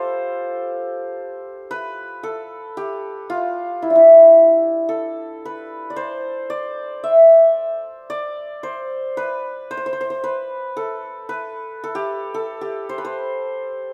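This Persian piece in C dastgah mahur moves at a stately, festive 113 BPM in 3/4 with a straight feel, tuned to A4 = 442 Hz. It is cut from a longer piece. A solo santur carries the whole 13.9 seconds, playing between D4 and E5. Its hammered tone comes across bright and shimmering, with ringing strings placed up front in the mix. A short opening passage gives way at 1.7 seconds to a longer second section that runs to the end. The performance was captured live in one room, and a moderate reverb with a 1.2-second decay gives it the sense of a large studio.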